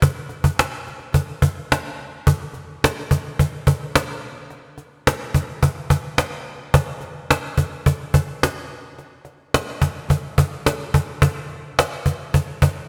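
A snappy acoustic cajon with snares sits close and up front in this hazy, dreamy indie pop fragment in a straight 4/4, wrapped in a lush hall reverb and bright 1980s-style digital production, playing throughout the roughly 12.8 seconds as the brief opening section gives way to a longer second one at 2.3 seconds.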